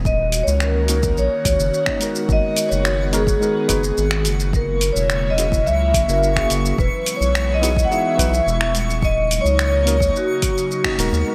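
Bright 1980s-style digital production with light reverb frames this wistful, relaxed sunset chillout excerpt at 107 BPM, where a ringing, metallic vibraphone melody with delay floats over an airy, breathy pad with chorus and phaser, a round, deep analog bass up front, a clean tine electric piano with medium tremolo entering at 0.9 seconds, a layered, tape-warm deep house kit of finger snaps, hi-hat and shaker with gated reverb, an electronic kick, and a twinkling granular texture arriving at 2.7 seconds, moving through D#m7, G#m7, F#7 and Emaj7 before a band accent at 10.8 seconds.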